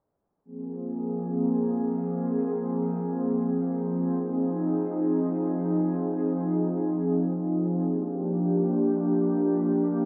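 This brief hip hop fragment floats in free time, moving with an ethereal, melancholic mood. A single airy, breathy pad carries it from 0.5 to 10.1 seconds, holding sustained chords up front in the mix. Its soft, full-bodied tone blends detuned sawtooth and triangle layers with a noise layer and ring modulation, shaped by a slow attack, long release and chorus. The harmony shifts from Ab69 to Fm7 at 4.2 seconds and then to Gm7 at 7.9 seconds, while a filter sweep runs throughout. A lush hall reverb and a low-pass filter give the production a dark, warm cast.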